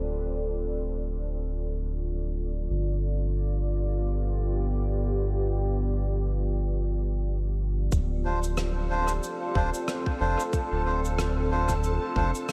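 Soaked in a huge, dreamy reverb, this hazy, spacious ambient dub fragment floats in a lightly swung 4/4. A deep, moody pad with a slow attack, chorus and its own reverb holds sustained chords moving from Dm7 to G7. Beneath it, a round analog bass blending sine and sawtooth tones sits dark and up front from the start. At 7.9 seconds the harmony returns to Dm7 as a tight, tape-warm electronic kick enters, along with cabasa and rim click trailing dub echo in a big room. Soon after, a reedy, breathy melodica places up-front stabs thrown into dub echo, and at 8.5 seconds a reversed, granular swelling texture glimmers brightly in the background with ensemble chorus, leaving a mellow, drifting haze cut from a longer piece.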